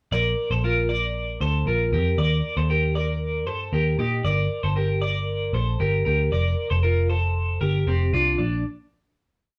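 A straight, steady 4/4 pulse carries this short, complete piece of jangly indie pop, which feels nostalgic and youthful. A bright, twangy twelve-string electric guitar rings out arpeggios up front, its clean, compressed tone shimmering through a harmonic tremolo and doubled in thirds. Beneath it, a vintage foam-muted electric bass, dark and round, plays a melodic line with slides, sitting just as close to the listener. The verse moves through Bbadd9, Eb, Gm and Fsus4 before both parts settle on a final Bb chord at 8.4 seconds, and they stop together at 8.6 seconds. A moderate studio reverb gives the sound of a band playing live together in one room.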